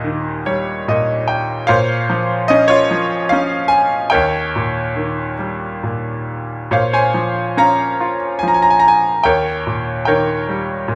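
Dark and melancholic, this lyrical classical solo piano fragment moves at 73 BPM in a rubato 3/4, tuned to A4 = 439 Hz. A bright, worn concert grand with deep bass sits up front, opens with a brief fill from 0.1 to 1.7 seconds, and spans Eb2 to Bb5 as the harmony turns from Eb through Bbmadd9 and Eb7. A moderate recital hall reverb surrounds the playing, and the passage is cut from a longer piece.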